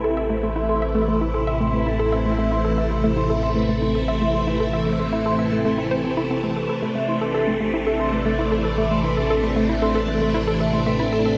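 A phased string machine holds a sustained A minor chord, its swirling, vintage sawtooth tone blooming through a slow attack and sitting up front under ensemble chorus and phaser. This is a cosmic, hypnotic stretch of sequencer-driven space music at 115 BPM in straight 4/4, heard as a cut from a longer piece. Above the strings, a vibraphone struck with medium mallets spins metallic, ringing arpeggios with a slow motor vibrato, passed through a low-pass filter and analog delay, and a filter sweep runs across it for the full 11.4 seconds. A hollow square pluck repeats a bouncy riff with a fast attack and short decay, its detuned, wave-folded tone carrying a noise layer and sub octave and softened by chorus and analog delay. Beneath it all, an analog drone holds a low A, evolving through pulse-width modulation. A wet spring reverb and heavy echoes wash the whole mix into a deep, floating space.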